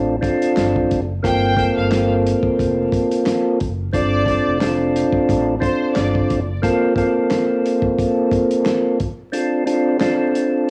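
A mellow, round tonewheel organ sits up front through slow rotary speaker and cassette tape, carrying moody Dm7 and Gm11 chords across this short, reflective boom-bap hip-hop cut at 89 BPM with a light 16th-note swing. A deep sine sub bass underpins the opening until 6.6 seconds, while a dry, muffled soul kit of fat snare, tight kick, hi-hat and handclaps plays under a lo-fi tape haze, its kick dropping out at 9.3 seconds. A bowed violin section with gut-string tone and light vibrato adds a reedy melody between 1.2 and 6.3 seconds through analog delay, all framed by light room reverb, home cassette character and vinyl crackle.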